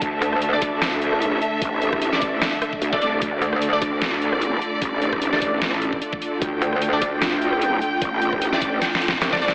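Heavy and menacing, this half-time wobble dubstep cut at 150 BPM in D minor pairs an up-front growling, overdriven bass and a metallic FM wobble bass, whose bursts return until it holds from 6.6 s, with a knocking electronic kick and a dubstep kit of deep snare, bright hats and rim click that closes on a fill at 8.8 s, while clear bowed strings sustain gritty, pumping chords, a bold orchestra-hit-like synth stabs through phaser and digital delay, and an airy, breathy pad pumps in the background, all soaked in lush hall reverb and squeezed into a heavily compressed AM-radio sound.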